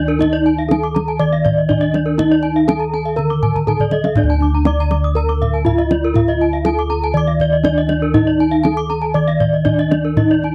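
Bronze bossed gongs stand up front in this brilliant, ceremonial Balinese gamelan passage, sounding round and mellow under padded beaters as they carry the bass from D2 up to E4+50c. Cut from a longer piece, it moves at 121 BPM in a straight 4/4 in D pelog, with a wooden-mallet bronze metallophone ringing out the melody between D4 and D5. Two more metallophones, struck with horn mallets, play arpeggios: one is bright, full and dry, close-miked between D5 and D6, while the other has an airy quality and spans Bb4-40c to Eb6. All three metallophones share the paired tuning that gives their ringing tones shimmering beats. The kendang enters at 0.2 seconds with a deep, close sound from hard hands and plays a drum fill from 3.6 to 4.2 seconds. The whole passage has the close feel of a 1970s-style studio recording, touched with light reverb.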